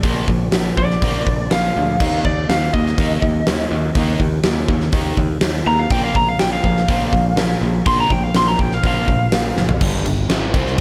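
Hard rock at 123 BPM in a straight 4/4, this heavy, aggressive excerpt opens on a lead guitar solo that runs from the start to 9.8 seconds, its bright, twangy, slightly broken-up tone compressed and set in plate reverb with analog delay, over chords moving from Bb through Eb5 and Bb5 to G5. Beneath it, a double-tracked, overdriven semi-hollow guitar drives the riff with a hollow-bodied warmth, while a growly, punchy picked bass sits direct and bright. A huge arena drum kit sits up front with a fat snare, a thumping kick and glittering cymbals in a hall-like space, and it drops a fill at 9.6 seconds as the solo closes.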